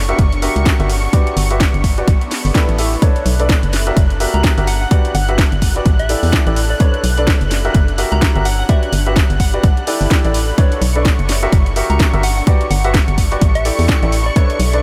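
Piano house with an energetic, bittersweet swing, cut from a longer piece, where a punchy overdriven electronic kick and a house kit of cracking snare and bright hats play alongside a hollow, organ-like FM bass up front, while a brilliant, woody upright piano riff runs through a low-pass filter and analog delay over silky detuned string chords, a blurred granular cloud pad and a soft, pure synth bell melody entering at 4.3 seconds, with the bass, piano, strings and cloud pad pumping to the sidechain and a very quiet electronic swell at 2.2 seconds.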